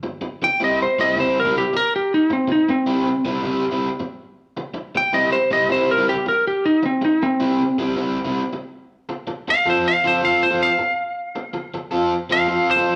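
A lightly driven lead guitar stands out most, singing a soulful melody in a dark, slightly broken-up, compressed tone that sits up front from 0.4 seconds onward. Beneath it, an overdriven electric guitar carries a bright, picked riff from the very start, also placed up front but a touch lower in level. This rollicking blues clip moves at 106 BPM in 4/4 with a swung eighth-note feel, set in C mixolydian. The harmony rests on C before shifting to F at 8.9 seconds. The two guitars sound like a band playing live in one large studio room, with a moderate reverb giving the sound a roomy tail.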